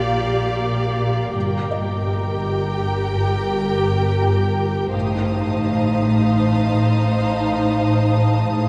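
A dark, lush viola section carries the accompaniment with vibrato and portamento through this ominous, mysterious 5/4 suspense cue, while a woody, dry marimba played with medium hard mallets repeats a rustic riff in the background. Above it, two expressive violin sections with soft attacks play the melody and a second line, a higher, smooth violin section and a very quiet, felt-muted upright piano with audible action noise add texture, and rich cello and double bass sections hold the low end beneath. The short cut from a longer piece, 8.7 seconds long, moves from Bb6 to Gm to F7/A and sits in a wet cathedral reverb.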